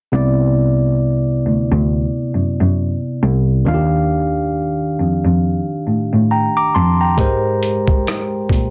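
R&B with a neo-soul lean, this relaxed, warm passage, cut from a longer piece, moves at 68 BPM in 4/4 with a swung sixteenth feel, as a bright, barky tine electric piano played clean through a combo amp and bathed in plate reverb spells out Cmaj9, Ebmaj9 and Abmaj9. Beneath it, a single bowed cello carries the bass line with a dark, woody tone, vibrato and a smooth top. At 7.2 seconds a gritty, pitched-down boom bap sampler-style kit arrives up front with thumpy kick, hi-hat and rim click, all inside a dense, heavily limited modern master.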